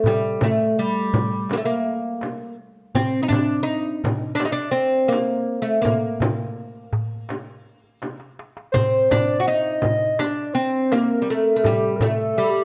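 A bright, woody fretless oud carries the melody up front from the start, over a crisp, deep metal-shelled darbuka played close with hard hands and a small, bright frame drum struck softly, setting a soulful, hypnotic Arabic maqam groove in this short cut from a longer piece. After a drum fill at 8.0 seconds, a pure, round sine lead enters at 8.7 seconds as a second line above the oud, sustained with vibrato and a chorus shimmer, all within a light reverb.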